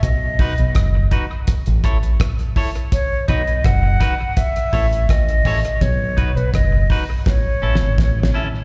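This short cut from a longer piece sounds like a live gig heard through the venue's PA, with a recital-hall reverb around it. It is uplifting roots reggae in B mixolydian at a straight 83 BPM in 4/4, with the chords alternating between B and A every half bar or so. Up front, a deep, dark and round fingered electric bass sits low and direct. Beside it, a cloth-damped, thuddy drum kit has a fat snare, a tight kick, rim clicks, hi-hat and a rolled-off top, with dub echo on the drums. A concert flute carries the melody between B4 and F#5, airy and tongued with vibrato, trailed by dub echo and slapback echo. Entering at 0.4 seconds, a bright, twangy, clean picked electric guitar adds quieter accompaniment with its own dub and slapback echoes, and a drum fill from 7.3 seconds closes the passage.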